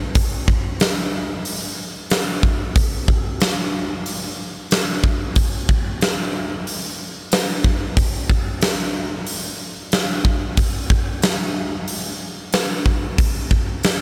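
A straight 4/4 rock beat at 92 BPM carries this brooding, melancholic excerpt, played on a huge acoustic arena drum kit of hi-hat, kick drum and snare drum from 0.1 to 14.0 seconds. The kit sits up front with a punchy kick and a fat snare, and its hall character is deepened by a moderate plate reverb with a 2.2-second tail.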